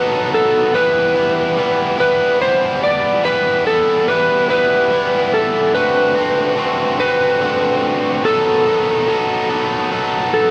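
Rock in a straight 6/8, this brooding, cinematic fragment is cut from a longer piece and runs about 10.5 seconds. An electric slide guitar carries the melody in a fairly high register, its slightly broken-up tone fingered with a slide and trailed by a slapback echo. Beneath it, a biting, overdriven guitar plays the riff, bright, picked, double-tracked and placed up front, reaching from low notes into the upper midrange. The harmony opens on a B5 power chord, settles on E minor, moves to D7 at 5.7 seconds and returns to B5 at 8.2 seconds. Light reverb and digital ambience surround a dark production.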